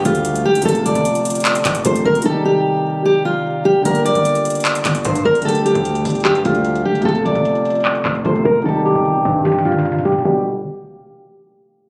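Captured on a phone in the room with club reverb, compression and a low-pass filter, this menacing half-time trap cut from a longer piece sets a dark, full-bodied fingerpicked steel-string acoustic guitar melody up front over a soft, felt-muted upright piano with audible action noise, a punchy, saturated 808-style bass sitting in the background, and a booming, tape-warm analog drum machine with deep kick, tonal snare, handclaps and metallic hats that drops out at 2.3 seconds, returns at 3.9 seconds under a filter sweep, and closes with a drum fill at 9.5 seconds.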